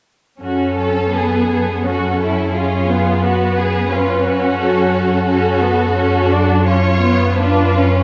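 An up-front cello section holds a smoothly bowed, steady bass beneath this melancholic, solemn slow movement for string orchestra in 3/4, where rubato gives the beats an uneven lilt. Above it, one violin section carries an expressive, soft-attacked melody with vibrato, while a rich second violin section sings an even line and a distant viola section fills in lush accompaniment with touches of portamento, all four entering together at 0.4 s. The strings sit in a wet concert hall reverb with a gentle, rounded top end, in a brief fragment cut from a longer piece.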